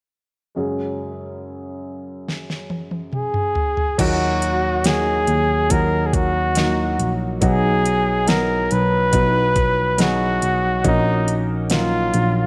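A dark, woody upright piano opens this heartfelt pop ballad at 70 BPM in F# major, its slightly detuned chords moving from F#sus2 through D#m and B to F#6/A#. An overdriven, electronic R&B drum kit with a knocking kick, fat snare and metallic hats arrives with a fill at 2.3 s, a close-miked flugelhorn carries the melody with vibrato from 3.1 s, and a worn, slightly out-of-tune tine electric piano takes the bass line through a combo amp from 4.0 s. A moderate echo chamber reverb gives this emotional excerpt a roomy sheen, with piano, drums and horn placed up front.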